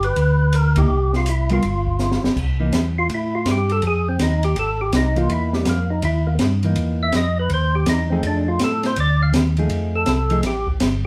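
A wet, live-in-one-room sound carries this soulful, swinging soul jazz organ trio excerpt at 164 BPM in 4/4, with a percussive, lightly overdriven tonewheel organ on slow rotary speaker playing the melody and stretching into a solo from 2.4 seconds, while a mellow, round second organ with chorus vibrato holds down the bass. Up front, an acoustic jazz kit with dark cymbals, a high-tuned snare and a punchy kick swings the eighths, marks a band accent at 0.7 seconds and throws a fill just before the solo. A clean, dark hollow-body electric guitar adds fingered accompaniment, dropping out briefly and returning at 5.2 seconds as the harmony moves toward altered dominant chords.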